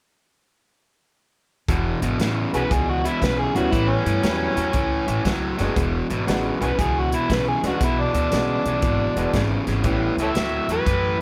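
Electric blues shuffle with a swaggering, soulful mood, cut from a longer piece, as a bright, overdriven semi-hollow guitar riff, woody pizzicato upright bass and a natural country drum kit with a punchy kick start together at 1.7 seconds. An amplified, gritty harmonica enters at 2.6 seconds with a jazz-style solo full of light vibrato, tongue slaps and scooped notes, and a clear, polished upright piano adds long-sustaining accompaniment from 3.5 seconds. The band moves through E, A9 and E9 chords in a moderate club reverb.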